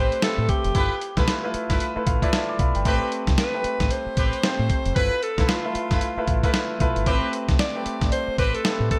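Swung sixteenths drive this slick, punchy new jack swing excerpt, where a gritty, compressed sampler-style drum kit with a thumpy kick and gated reverb sits up front, a dark, round fingered electric bass holds the low end from the background, an intimate concert grand piano with audible action noise accompanies and adds a fill at 1.8 s, a distant, tight horn section punctuates with soft-attack stabs, and a breathy alto saxophone with light vibrato and delay carries the melody over bright 1980s-style digital production and plate reverb.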